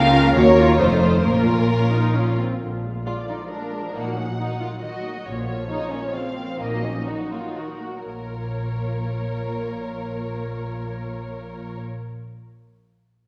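A muted string orchestra opens this quick classical-period movement in B-flat minor, all five sections sounding together from the first moment in a restless, stormy 3/4 at roughly 118-138 BPM. The violins carry the melody from a distant, veiled place, while a second violin line sits lush and up front, so the supporting voice is heard more plainly than the tune above it. Con sordino violas fill in the accompaniment with a smooth top and soft attack, and close-sounding cellos and double basses anchor the bass with dark, vibrato-laden bowing. The harmony circles through E-flat minor, F7 and B-flat minor before turning to B-flat seven, and the tempo slows from 4.6 to 8.1 seconds before the music settles back on B-flat minor. A wet scoring-stage reverb places the ensemble further back in the room, lending the hushed tone a shadowy depth in this brief cut from a longer piece.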